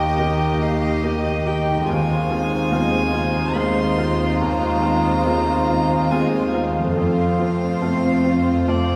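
From its opening moment, this cinematic film-score passage unfolds as a moving, hopeful piece for orchestra, in a rubato 3/4 at around 71 BPM. A solo violin carries the melody high above, its bowed sul tasto tone rich, pure and floating, and sounding distant. Close by, a studio violin section adds a lush, intimate second line with warm vibrato. A bright, brilliant baby grand piano and a chamber viola section in the background fill out the accompaniment, while a concert harp rings out fingerpicked arpeggios. Up front, a cello section with light vibrato and a smooth top holds the bass. The harmony moves from Eb to Ab6/Eb at 1.9 seconds and arrives on F at 7.0 seconds, the whole ensemble heard from further back in a concert hall with a lingering reverb, in a short passage cut from a longer piece.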